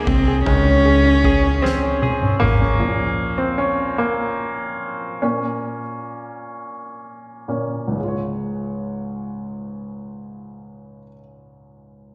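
An intimate, airy cello carries the melody of this swaying, romantic six-eight pop ballad in Db major at 40-51 BPM. It is bowed sul tasto with light vibrato and set in plate reverb, over a woody upright piano, a twangy, compressed electric guitar in the background with slapback and tape echo, a round, foam-muted bass, and a soft-mallet kit with a boomy kick, fat snare and toms. Around a drum fill, the other parts drop out within the first few seconds. From 2.8 s the polished piano takes a slowing solo over Bbm, then settles on Db before it stops at 12.1 s, all heard as a live gig through the venue's PA with recital-hall reverb.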